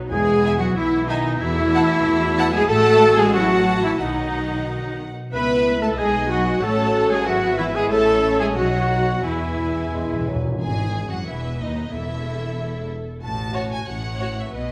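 A quick, graceful and spirited classical-period orchestral movement in E major at 92 BPM in 2/4 with a rubato feel, in which a focused chamber violin section carries the melody over a rich viola section accompaniment, a lush symphonic violin second line and a bowed bass of clear cellos and smooth double basses, while a mellow clarinet, silvery flute and oboe trace second lines and a French horn section holds sustained chords in the background until about 10.2 s, round soft-mallet timpani sound a fill from 9.3 s, a vintage-toned bassoon adds a brief accompaniment at 9.9 s, and scoring-stage reverb gives the room a spacious sheen.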